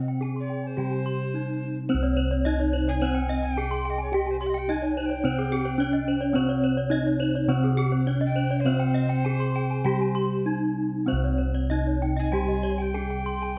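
A straight 4/4 pulse at 96-108 BPM drives this brilliant, hypnotic Balinese gamelan passage in C pelog, cut from a longer piece: an up-front bronze metallophone carries the melody with a boxy, shimmering paired-tuning ring, and round, airy bossed gongs supply the bass. Two higher metallophones weave arpeggios, one struck with a bright horn mallet and the other with a wooden mallet, while a dark, smooth low metallophone plays accompaniment, dropping out at 1.9 s and returning at 6.4 s. A breathy alto recorder with chiff, vibrato and a slightly unsteady tone adds a second line above, and the whole ensemble sits in a moderate recital-hall reverb captured by close, detailed microphones.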